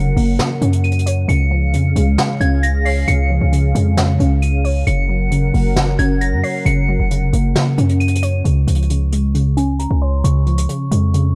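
A half-time 4/4 groove at 134 BPM in Db major opens this dreamy, wistful hip hop and trap excerpt, with brushed hi-hat and snare from a natural, small-room jazz kit sitting beneath a punchy, heavy 808-style bass up front, while a lo-fi, detuned pluck carries the accompaniment, a moody, nasal analog pad holds sustained chords until 8.4 seconds, and a pure FM bell with phaser and delay floats the melody high above, all in a dark, dry production before a filter sweep arrives at 8.5 seconds.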